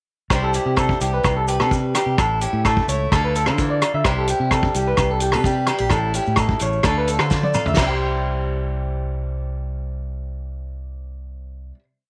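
Recorded in a small room with light reverb, this carefree highlife piece in C major moves at 129 BPM in a danceable, straight 4/4. A warm soul kit with a fat snare and dark cymbals sits up front beside a round, syncopated fingered bass. Ringing agogo bells keep a bell time line and grainy maracas a shaker pattern in the background, while a bright, boxy acoustic guitar plays swing-style alternating-thumb accompaniment and a slightly broken-up electric guitar spins an arpeggiated ostinato through spring reverb and slapback echo. After a drum fill at 7.3 seconds, the drums and percussion stop and the guitars and bass ring out on a final C chord from 7.8 seconds.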